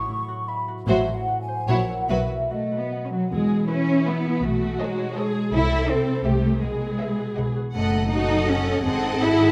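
A dramatic, restless classical excerpt in 3/4 and E major, moving with rubato at roughly 144-167 BPM as its harmony drifts through chromatic turns before settling on a tense G#7b9. A mellow, hollow flute group sits up front over ringing harp arpeggios for the opening seconds. Lush bowed strings join just under a second in as the harp keeps ringing, with a smooth-topped violin melody, a darker, woody second violin line, viola accompaniment with portamento, and an expressive cello and double bass foundation led by the prominent cellos. Timpani with calf heads sound in the background at 8.9 seconds, all set in a moderate scoring-stage reverb.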